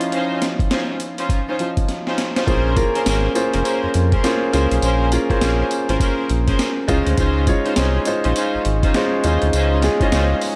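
A round, deep analog bass stands out once it enters at 2.5 seconds, its dark sawtooth-and-sine tone sitting up front with a fast attack and long sustained notes beneath this confident, punchy new jack swing groove in a swung 4/4. From the start, a concert grand piano carries the accompaniment with an intimate, polished sound, its action noise audible and its notes ringing with long sustain. A lush studio string section adds bowed ensemble stabs with vibrato and a smooth top. The sampler-style boom bap kit is gritty and compressed, pitched down and re-recorded in a large room, pairing a thumpy kick and high-tuned snare with hi-hat and tambourine, and a drum fill at 1.9 seconds leads into the bass entrance. Harmony moves from Dbmaj9 to Bbm9 and back to Dbmaj9 under light reverb, and a brief piano fill closes this cut from a longer piece.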